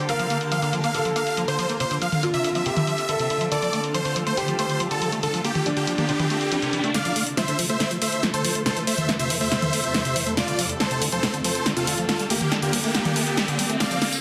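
Straight techno drums with a punchy, overdriven snare, filtered hats, tambourine and toms drive this bittersweet, euphoric uplifting trance passage cut from a longer piece, where a huge, bright detuned supersaw lead carries the melody over squelchy, resonant acid-bass arpeggios and a deep concert grand piano second line that drops out at 6.9 s, just as a background riser (entering at 5.0 s) gives way to a build-up with a drum fill and a filter sweep on the bass through to 14.2 s, all in a dense, heavily limited modern mix.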